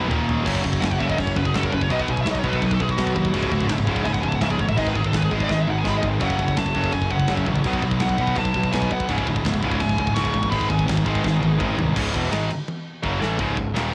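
Relentless and heavy, this heavy metal excerpt in C# minor charges at 167 BPM in straight 4/4, with three bright, distorted rhythm guitars riffing in the background over a growly, punchy fuzz bass and a tight, big-room drum kit with a medium-tuned snare, while a high-gain lead guitar with cassette-tape grit and tape echo solos from 0.8 to 10.8 seconds across an F#m–B–C#m–G#m progression, all captured as a lightly reverberant home cassette recording.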